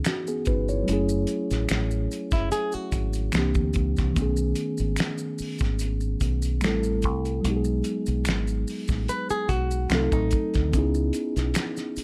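A lightly swung sixteenth-note groove in 4/4 sets a slow, late-night pace for this soulful neo-soul R&B excerpt. A cloth-damped drum kit sounds thuddy and close in a small room, with a fat snare, tight kick, hi-hat, finger snaps and a rolled-off top, while maracas and group handclaps add a close, dry shimmer underneath. A mellow tine electric piano carries the harmony through a smoky progression of C#m9, F#m9, C9, B13, Am7, G#m7 and Cdim7 before returning to C#m9, its tone clean and heard through built-in speakers. From 0.5 s a deep dub fingered electric bass settles in low, dark, round and punchy, sitting up front with the kit. A fingerpicked flamenco guitar adds brief, warm second-line phrases at 2.3 s and again at 9.1 s. The whole mix stays intimate and dry, with little reverb around the players.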